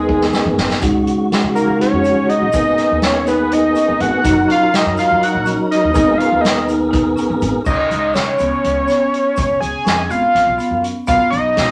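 Set in a straight 7/8 at 246 BPM counted in eighths, this tense, intricate progressive band piece is cut from a longer work and opens with a drum fill on a soft-mallet kit. A fat, detuned analog lead mixing sawtooth and square-wave tones with a sub octave and chorus sits up front, carrying the melody as a solo through the first 7.7 seconds. Beneath it a round, dark tonewheel organ with key click, chorus vibrato and a fast rotary speaker accompanies until 7.6 seconds, while a growly pizzicato upright bass with steel strings holds the low end. A woody rosewood marimba adds band-limited, vintage-tinged arpeggios; the distant, roomy kit brings a punchy kick, medium-tuned snare, crash, hi-hat and toms; and a grainy, very quiet tube shaker joins in. The harmony moves around G#madd9, C#sus4 and F#6 before a C#7 opens the closing section, and the mix sits in a wet studio reverb.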